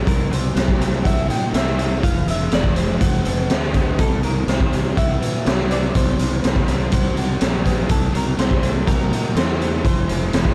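The recording sounds dark and warm, with little reverb, in this short cut from a longer rock piece that leans toward shoegaze and dream pop. At 123 BPM in a straight 4/4 and C mixolydian, the mood is dreamy and hazy, moving through C7, Fadd9, C and back to C7 before landing on F at 9.8 seconds. A raw garage drum kit sits up front, its punchy kick, high-tuned snare and hi-hat gritty and saturated, with a mid-forward tone, a rolled-off top and the ring of a bright stone room. A crunchy, double-tracked overdriven guitar picks the riff through analog chorus, while a fuzz-soaked fingered electric bass adds a round, overdriven low end. Sitting in the background from 0.1 seconds, a dark, clean semi-hollow guitar plays the fingered melody through chorus and digital delay.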